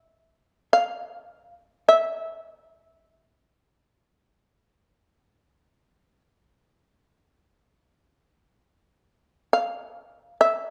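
A lone shamisen opens this short fragment of Japanese traditional chamber music and carries it through to its close at 10.7 seconds. Its plectrum-plucked, fretless tone is percussive and buzzing, with a powerful presence that sits up front. The playing unfolds in free time, staying within a narrow high band between E5 and F5. The mood is austere and calm. A moderate recital hall reverb surrounds the instrument, lending the solo a sense of space.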